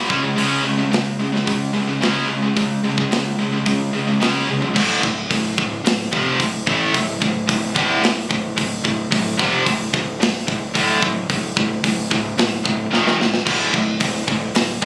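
Captured on a phone in a studio room with light reverb, this relentless heavy metal excerpt in D harmonic minor at 110 BPM pairs a bright, picked, double-tracked distorted guitar riff up front with a growly, punchy fuzz bass and a tight acoustic drum kit with a medium-tuned snare and rolled-off top, as a drum fill at 4.5 seconds leads into a half-time section on Dm from 4.8 seconds, with another fill at 12.9 seconds.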